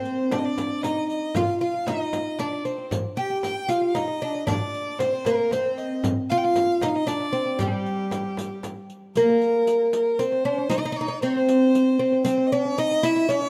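In a 3/4 at 115 BPM with a straight feel, this festive, warm Arabic maqam ensemble piece is cut from a longer performance, opening in maqam bayati on G. A plectrum-plucked, fretless oud carries the melody up front, its woody double strings given a slapback echo. A single bowed violin plays a clear, smooth second line above it, even and touched with vibrato. Underneath, a close, dry riq with dark jingles and a small, bright frame drum, compressed and saturated under hard hands, drive the percussion. The frame drum drops out at 8.8 seconds, and at 9.1 seconds the music shifts into maqam saba on C. Light reverb and a rough home-demo mix give the whole an informal sound.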